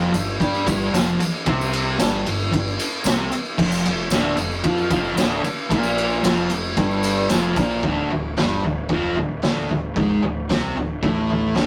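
A double-tracked fuzz guitar sits up front in this raw, swaggering garage rock excerpt, its distorted, picked riff spanning from low D2 up to G4 in a straight 4/4 feel. Beneath it, a fuzz picked electric bass adds a bright, punchy, overdriven low end, while a raw garage drum kit of crash, ride, snare, toms and boomy kick comes across gritty, saturated and mid-forward with a rolled-off top. A jingly tambourine sits close and dry in the background until it drops out at 7.8 seconds, where the music moves into a new section and the harmony settles on D minor after passing through Fsus2 and Bb6/D. The whole take has the rough character of a rehearsal-room recording, with tube saturation and a moderate small-room reverb giving it a live, unpolished edge.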